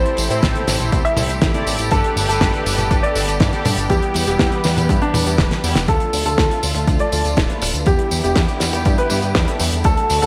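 A straight 4/4 italo disco pulse drives this bittersweet, melodramatic fragment cut from a longer piece, where a dark, worn grand piano with audible action noise carries the melody over veiled con sordino strings, glossy chorused polysynth stabs and a fat, nasal, saturated analog bass, while a dry, damped 70s drum kit with gated reverb and a punchy, overdriven electronic kick entering at 0.4 s propel the groove, a drum fill at 5.5 s leading into a filter sweep on the piano from 5.9 s, the whole set in a lush hall within a bright 1980s-style digital production.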